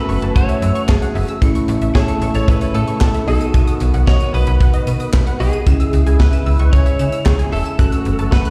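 A short synth-pop excerpt in C# minor at 113 BPM opens with a dark, slightly broken-up lead guitar melody carrying tape echo, set over bell-like tine electric piano, a smooth, warbling analog pad with chorus, and a lush, detuned unison pluck arpeggiating high with its own tape echo. From 0.1 seconds a snappy, metallic FM bass and a tight, up-front studio drum kit of kick, snare, hi-hat and handclaps drive the cool mood forward through F#m7, A, B and C#m. The whole mix sounds as if played on a big sound system in a bare stone room, its reverb lending the straight 4/4 groove a roomy, stony character.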